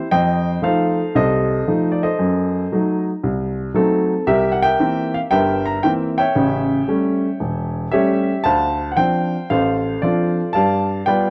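Solo jazz at 115 BPM in 4/4, with a swinging eighth-note feel and a playful mood, set in C mixolydian and tuned slightly below standard pitch at A4 = 438 Hz. A single upright piano with a woody, polished tone sits present and up front, ranging from E1 to Bb5 as it moves through F7, F#dim7, C7, A7, Dm7 and G7 across the 11.3-second excerpt cut from a longer piece. A moderate plate reverb with a 2.4-second decay surrounds the dark, warm production.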